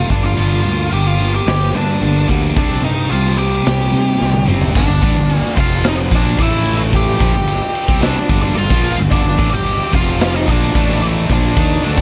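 A raw garage drum kit sits up front in a bright stone room, its punchy kick, medium-tuned snare, toms, crash and ride sounding saturated and gritty with a rolled-off top, and a fill at 4.2 seconds tips this dark, angsty quiet-loud alternative rock excerpt in G minor into its second section at 4.7 seconds. At 110 BPM in a straight 4/4, a growly fuzz fingered electric bass carries the low end with overdrive, while a dark, fuzzed octave-fuzz lead guitar sings the melody through distortion and tape echo. A warm, compressed clean electric guitar picks arpeggios with tape echo in the background over Gm and Cm, then drops out at 4.8 seconds. Two picked rhythm guitars share the riff: a bright, tight distorted guitar kept very quiet, and a bright, overdriven cranked stack guitar in the background that joins at 0.4 seconds. The second half moves through G5, F5, Bb and A5 before settling on a rootless Gm, all under a studio reverb, and the piece is cut from a longer work.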